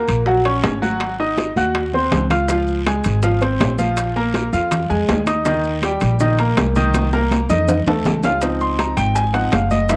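A bright baby grand piano anchors this fiery, danceable salsa excerpt, its brilliant, long-sustaining voice sitting up front with a cassette-tape tint as it comps through chords such as Ebm7, Dbmaj7 and Faug7 before taking a short solo from 8.4 seconds. Beside it, a woody, growly pizzicato upright bass on steel strings gives a thumpy low end that is also prominent in the mix. At 162 BPM in a straight 4/4, metal-shell timbales ring out clearly, and drum fills arrive at 1.6 and 6.9 seconds. Further back sit high-tuned congas played with soft hands, tight bongos, a raspy, saturated guiro, and grainy, mellow maracas that join at 2.5 seconds. The home cassette recording carries a moderate spring reverb and small-room ambience, giving the whole a homespun, lively feel.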